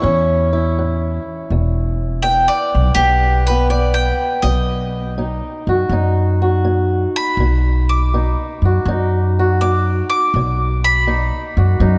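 Drenched in the long, echoing reverb of a vast cathedral space, this gritty, rollicking excerpt of acoustic country blues swings at 82 BPM in 4/4, with a bright, double-strung bowl-back mandolin taking the picked melody as a solo until 11.5 seconds over a dark, boxy fingerpicked swing guitar with audible finger squeak and a woody, growly pizzicato upright bass on steel strings, all three sitting up front as the chords move through A, E5 and B.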